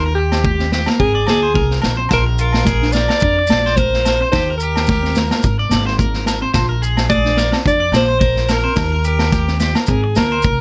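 A dry cut from a longer highlife guitar band track sets a carefree, joyful mood at 108 BPM in 4/4 with swung sixteenths, cycling through Eb, Abadd9 and Bbadd9 in Bb mixolydian. Up front, a clear alto saxophone sings a jazz-style solo melody with light vibrato and scooped notes, over a woody pizzicato upright bass and a gritty, saturated vintage drum kit with a tight kick and rolled-off top. A twangy, slightly broken-up electric guitar picks bright arpeggios while a dark, clean, fingered electric guitar with ensemble chorus comps in the background, joined by ringing agogo bells, soft-handed high-tuned congas and grainy maracas that enter at 2.1 seconds.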